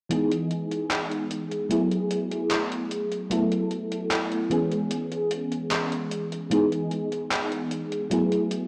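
Dreamy and woozy, this vaporwave fragment drifts at 75 BPM in E major, cut from a longer piece, with a mellow FM electric piano carrying the accompaniment from 0.1 to 8.7 s through soft, round, warbling chords like Emaj7, F#m11, B7sus4 and C#m7, its dark vintage tone sitting up front under phaser, ensemble chorus and tape echo. Behind it, a detuned 8-bit digital drum machine ticks out handclaps and hi-hat, overdriven and gritty with 12-bit sampler crunch and gated reverb, sounding re-recorded in a large room. A lush hall reverb and cassette tape character wrap the whole fragment in a hazy, faded glow.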